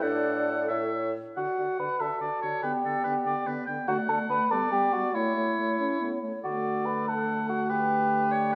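An up-front, mellow bassoon carries the bass in this lively, graceful excerpt of a quick classical-period movement for wind quintet, in D major and a rubato 6/8 at 94 BPM (dotted quarters). A distant, airy, hollow flute with vibrato and a soft attack sings the melody in the background, while a roomy oboe with light vibrato adds a second line and a clear French horn and warm clarinet fill out the accompaniment. All five play throughout the 8.6 seconds in the wet reverb of a recital hall or church, with the harmony moving between D, G and A.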